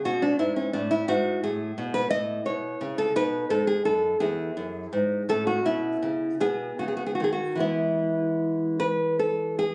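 Classical baroque-style dance in 6/8 and E major, radiant and flowing, where a solo nylon-string guitar, warm, fingerpicked and up front, moves with rubato at 48-60 BPM in dotted quarters through a progression from A to E/G#, Aadd9, B and back to E, tuned to A4 = 435 Hz and captured on a phone in the room with light club reverb and compression in a brief cut from a longer piece.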